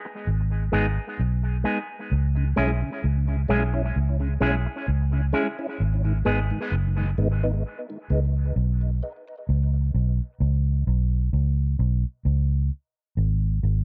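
This reggae excerpt moves at a slow 65 BPM in 4/4 with a lightly swung sixteenth feel, set in C# minor with a heavy, hypnotic mood. It opens on a short break over G#m, where a bright, twangy electric guitar through an envelope filter, high-passed and trailing dub echo, plays accompaniment up front. A vintage muted fingered electric bass enters almost at once, its dark, foam-muted, amped tone holding the low end up front through the close. Around 2.4 seconds a mellow tonewheel organ joins with chorus vibrato, a slow rotary speaker, a high-pass filter and dub echo, as the harmony shifts to C#m, back to G#m, then Bsus2. The guitar drops out by 6.4 seconds and the organ by 9.4 seconds, leaving the bass alone under light reverb in an echo-heavy mix.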